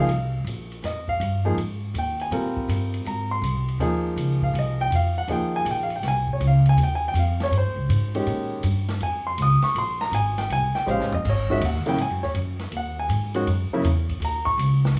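A woody, growly pizzicato upright bass sits up front in this hypnotic, spiritual modal jazz passage, cut from a longer piece and swinging at 161 BPM, beside a warm, short-sustained baby grand piano bathed in plate reverb voicing suspended chords from Bb13sus4 through Eb13sus4 to G#7sus4, while a natural-sounding big-band kit with a punchy kick and medium-tuned snare rides further back and marks the return of the opening section with a brief fill at 10.9 seconds, all in a rough home-demo mix with light reverb and studio ambience.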